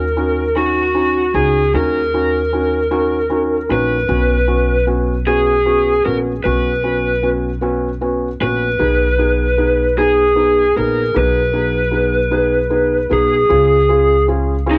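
A slow, straight 6/8 sway at 51 BPM carries this melancholic, aching Eb minor pop fragment, where an up-front, overdriven electric lead guitar with analog delay sings a dark, lo-fi melody over a soft, mellow felt-muted upright piano with a cassette-tape tint and a woody, growly pizzicato upright bass, all heard in a snug booth ambience on a home cassette recording as the chords move from Ebm7 to Bsus2, Abm and Db.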